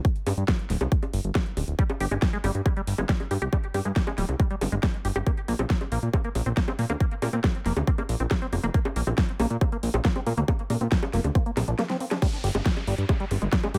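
A straight 4/4 pulse at 138 BPM drives this hypnotic psychedelic trance cut, built on a punchy, overdriven, up-front electronic kick and a layered dance kit with a huge snare, metallic hi-hats, bongos and crash, while a fat, detuned sawtooth bass with tube saturation and filter sweeps holds the low end over a G5 to Bb5 harmony. At 1.8 seconds a squelchy, resonant acid riff enters with chorus, sidechain pumping and digital delay, sweeping its filter through a digital ambience. A drum fill arrives at 11.6 seconds, the kick briefly drops out, and the drop lands at 12.2 seconds back on G5 with an electronic downlifter.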